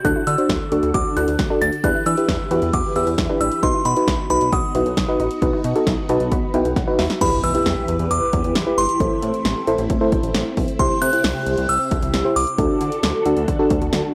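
A crystalline FM synth bell carries the up-front melody with chorus, tremolo and analog delay in this cool, nocturnal synth-pop excerpt in E minor at 134 BPM, over a warbling vintage FM electric piano, a swirling phased string machine, a nasal analog pluck arpeggiating in the background until 7.1 seconds, a glossy chorused synth bass and a punchy analog drum machine whose fill leads into an electronic impact at 7.2 seconds, all captured in a dry, gritty hardware recording with light reverb and transformer saturation.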